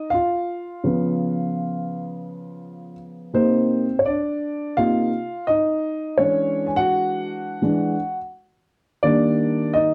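A dark concert grand piano carries this short hip hop excerpt entirely on its own, its mellow tone sitting up front with a deep bass and a slightly boxy character. The mood is nocturnal and mellow, moving at 84 BPM in 4/4 with a 63% swing on the sixteenths that gives the phrasing a laid-back lilt. The piano ranges from C3 to G#5, moving through Db7, Cm7 and E13 before settling on Ebmaj7 near 9.1 seconds. A new section begins at 3.3 seconds, with the solo piano continuing throughout. A wet small room reverb and a dark, warm production wrap the instrument in an intimate, late-night atmosphere, and the clip is cut from a longer piece.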